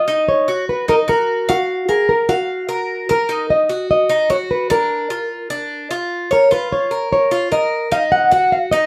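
Danceable and sultry, this short latin cut at 149 BPM in Eb minor sets a small, thumb-plucked nylon-string guitar melody, with fresh strings and audible finger squeak, up front beside the bright, metallic double strings of a picked Cuban tres playing arpeggios, both close and detailed in a moderate studio reverb over a progression that moves from Ebm through Gbmaj7 and Bb before returning to Ebm at 8.1 seconds.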